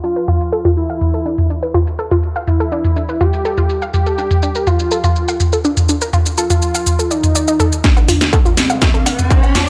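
A straight 4/4 pulse at 123 BPM drives this dramatic, melancholic melodic techno in D dorian. An overdriven drum kit with a cracking snare, hi-hat, shaker, toms and woodblock sits up front, with sidechain pumping on its hats, toms and percussion. A thick, dark sawtooth unison lead with a sub octave carries the melody, while a warbling, detuned, wave-folded pluck plays arpeggios, both pumping and trailing dub echo over a shift from Dm to Eb and back, all under a low-pass filter and light reverb. After a filter sweep, a distorted electronic kick punches in at 7.8 seconds for a build-up with a drum fill and a sweep on the lead, and a riser enters at 8.5 seconds as this brief excerpt ends.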